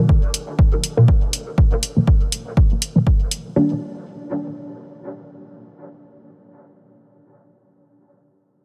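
A swung 121 BPM groove in 4/4 from a punchy, tape-warm analog kick and an up-front hi-hat drives this hazy, nocturnal dub techno excerpt, tuned to A4 = 436 Hz, until the drums drop away by 3.4 s, leaving a dark, detuned sawtooth chord stab, muted and full-bodied with a fast filter pluck, phaser, sidechain pumping and dub echo, that rides a filter sweep over Bmaj7 before shifting to Ebmaj7 at 3.6 s and sounding on to 6.6 s in light digital reverb.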